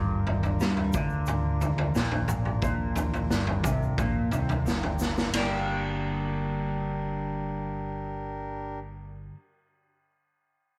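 A reedy, breathing pedal harmonium holds sustained chords on G minor while a dark, clean electric guitar plays a flanged, double-tracked riff and a round fingered bass sits in the background, setting a hypnotic, trippy psychedelic rock groove at 89 BPM in a straight 4/4. A gritty, saturated garage drum kit with a boomy kick and rolled-off top sits up front from 0.3 seconds, joined by a grainy tube shaker, and both drop out just after a drum fill at 5.0 seconds. The harmonium, guitar and bass carry on into the second section in light studio reverb, with the guitar ringing last until 9.4 seconds in this cut from a longer piece.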